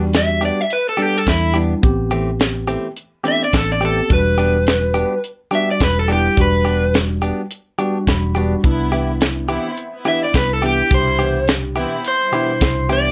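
Straight-eighth soul blues in E minor at 106 BPM, this short excerpt carries a mournful, soulful mood over a light 16th-note swing. A tight funk drum kit sits up front with a dry, airy sound, a high-tuned snare and a tight kick, while a vintage muted electric bass adds a dark, round, punchy low end. A crunchy overdriven guitar, picked and up front, carries the melody, and a bright, compressed clean guitar recorded direct plays stabs beneath it. A worn, slightly out-of-tune electric piano heard through its built-in speakers provides accompaniment and adds a fill at 7.8 seconds. After moving from Em7 to Am7 and back to Em7, the harmony shifts to Cmaj7 at 8.6 seconds as a rich studio string section enters softly with expressive bowed vibrato chords, all set in light reverb.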